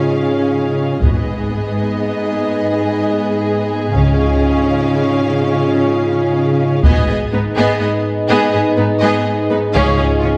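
Heard from further back in a reverberant scoring stage, this dramatic, epic orchestral film-score build-up in G# dorian moves at 83 BPM in 12/8, with lush, vibrato-laden violins carrying the melody over a soft-attacked second violin line, clear violas, mellow French horns and trombones holding sustained chords, rich cellos and bowed double basses (entering at 1.0 s) anchoring the bass, and a taiko ensemble striking with heavy sticks at 1.0 and 6.8 s.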